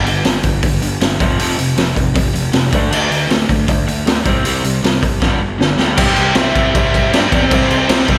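A raw, small-room recording with light reverb puts a saturated, gritty garage drum kit up front, its punchy kick and medium-tuned snare sitting mid-forward under a rolled-off top. This upbeat, rowdy punk rock cut, taken from a longer piece, opens at 0.0 seconds with two overdriven guitars picking a straight 4/4 riff in the background, one biting and the other crunchy, both carrying slapback echo. Beneath them a growly fuzz bass, picked and overdriven, drives the low end through the chord run of G5, F5, D5 and C5 before returning to G5. A drum fill at 5.2 seconds kicks the song into a new section over a C chord. At 6.0 seconds a dark, lo-fi lead guitar through a small cranked amp enters with a melody doused in overdrive, slapback echo and digital delay, while a very quiet, double-tracked distorted guitar adds a bright riff underneath.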